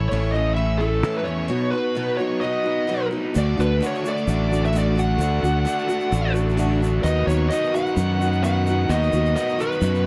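A dark, distorted lead guitar carries the melody up front in this hopeful, open-road folk and heartland rock passage at 130 BPM in 4/4, over a round, punchy fingered bass, a boxy parlour steel-string acoustic with fresh strings, a double-tracked crunchy guitar riff and a very quiet tonewheel organ holding shouting chords through a slow rotary speaker, while a grainy tube shaker joins in the background at 3.4 seconds, all captured in a dry, close 1970s-style studio sound.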